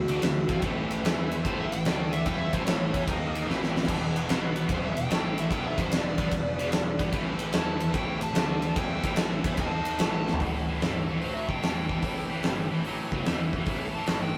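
Raunchy and driving, this short blues rock and southern rock cut swings at 147 BPM in A mixolydian, with an overdriven slide guitar taking a solo over the first 10.4 seconds before the piece moves into a new section. Beneath it, a bright, double-tracked distorted guitar digs into a picked riff, a fuzzy overdriven bass sits in the background, and a gritty tonewheel organ murmurs very quietly through a slow rotary speaker. A huge arena drum kit sits up front with a fat snare, punchy kick and bright cymbals, firing off fills at 3.5 and 10.2 seconds, all captured with a rough rehearsal-room feel and moderate reverb.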